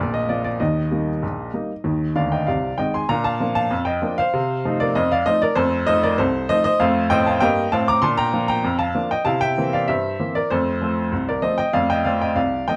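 Cheerful and jaunty, this ragtime excerpt in straight 2/4 features a solo upright piano with a woody, intimate tone, long sustain and audible action noise, placed up front in moderate studio reverb within a dark production, with a fill at 2.2 s leading into a new passage at 3.1 s that moves through F7 and C7 chords.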